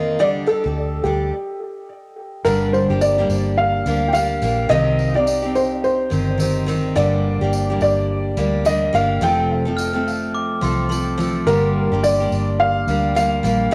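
A dark, woody upright piano carries the melody up front, its slightly detuned tone and audible action noise colored by cassette tape and tape echo, in this wistful, tender acoustic pop excerpt at 106 BPM in G minor with a swung 16th feel. A bright, full-bodied picked steel-string guitar and a round, punchy foam-muted electric bass with tube saturation accompany it, all stopping at 1.3 s before the band returns with a jingly tambourine at 2.5 s over a Gm, Cm, F progression. At 9.8 s, a sparkling, bell-like glockenspiel struck with hard plastic mallets adds a brief second line, and the whole piece has the intimate, lightly reverberant character of a home cassette recording.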